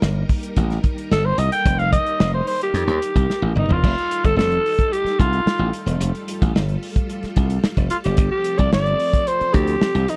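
A raspy, growling alto saxophone with tape echo enters at 1.1 seconds over a strutting, energetic 110 BPM funk groove, where a bright, punchy slap bass and a dry, dark soul drum kit sit up front, a drum fill at 3.3 seconds leads into the second section, and a lush string machine with ensemble chorus holds sustained chords in the background, moving from F7sus2 through F9 to G9sus4, all captured in a close, 1970s-style studio sound cut from a longer piece.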